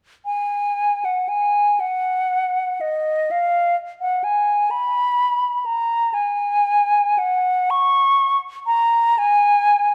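A solo concert flute carries this short, serene and nostalgic classical fragment, taken from a longer piece, playing alone from 0.3 to 9.9 seconds. Its airy, up-front tone moves between D#5 and C#6 with expressive vibrato and tongued notes, in a free rubato 6/8 at roughly 37-43 BPM in dotted quarters, tuned to A4 = 437 Hz. A moderate scoring-stage reverb with a 1.8-second decay gives the line a gentle halo of space.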